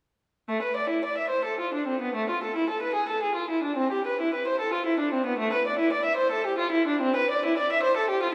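In a rubato 6/8 lilt at 74 BPM, counted in dotted quarters, this short cut from a baroque-style suite movement for unaccompanied violin unfolds in A minor with a solemn, introspective mood. A single bowed violin, played in period style with a dark, nasal gut-string tone, sits up front from 0.5 to 8.3 seconds and ranges from A3 to E5. Its reedy voice rings into a wet church reverb with a long 3.3-second decay.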